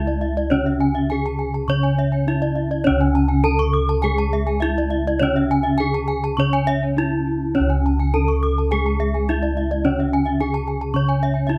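Balinese gamelan at 103 BPM in 4/4 with uneven beats, this brilliant, hypnotic excerpt is cut from a longer piece in C# pelog tuning. A bright, airy bronze metallophone carries the melody up front, struck with a horn mallet, its paired tuning producing shimmering beats. Beneath it, a lower metallophone played with a wooden mallet supplies accompaniment, while bossed gongs with padded beaters hold the bass in a round, mellow, soft tone that sits up front. Two higher metallophones spin arpeggios throughout, one ringing under a horn mallet and the other, close-miked, dry and full from a wooden mallet, carrying a tape echo. Light reverb surrounds the ensemble, and the whole passage runs as a single section to 11.6 seconds.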